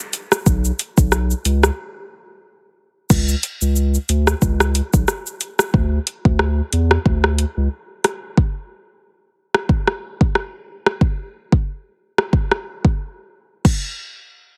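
A lightly swung sixteenth-note groove in 4/4 drives this tough, hypnotic dancehall excerpt, cut from a longer piece. The electronic, produced drum kit starts at 0.1 s and sits up front, pairing a deep kick with metallic hi-hats, rim clicks, shaker and crash cymbal, all carrying a tape-warm edge. A saturated sub bass enters at 0.5 s, its thick, sine-like tone striking with a fast attack and holding sustained notes up front as the mix's deep foundation until it drops away at 7.7 s, leaving the drums to carry on. Brief breaks punctuate the groove as it moves from a short opening section into a longer second one. The dry, heavily compressed sound has a pressed, radio-like punch that keeps both parts close and forceful.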